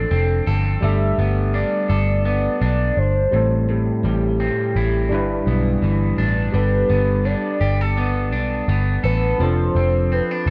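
A round, foam-muted electric bass sits up front in this laid-back, dreamy indie pop excerpt, its vintage picked tone anchoring a gently swung groove. A slightly broken-up, twangy electric guitar with subtle chorus and warbly pitch drift shares the foreground, while a velvety sawtooth synth lead carries the melody with lush chorus and vibrato, and a barky tine electric piano, lightly overdriven with a cassette-tape character, sits in the background. Light digital reverb frames the dark production as the chords move through F6, Gadd9, Am7 and G6.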